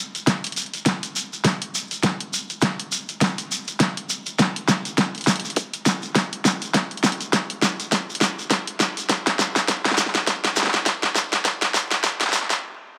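Glitch hop at 102 BPM in 4/4, with a playful, swaggering 16th-note swing, this short passage cut from a longer piece is one continuous build-up carried by a drum fill. An up-front, layered pop drum kit with a fat snare and hi-hat sits over a punchy, filtered electronic kick and a grainy, mellow shekere in a small room, both set in the background. Light reverb, digital ambience and vinyl crackle color the sound before everything halts at 12.6 seconds.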